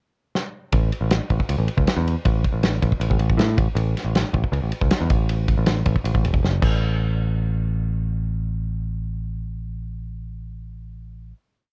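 A loose indie drum kit with a punchy kick, dark cymbals and a gritty vintage sampler edge opens this bright, intricate math rock and midwest emo piece with a fill before a syncopated riff from the direct, up-front picked electric bass, and after another fill the drums stop at 6.7 seconds for a final hit while the bass rings on alone to 11.3 seconds, all dry and coloured by the warble of worn cassette tape.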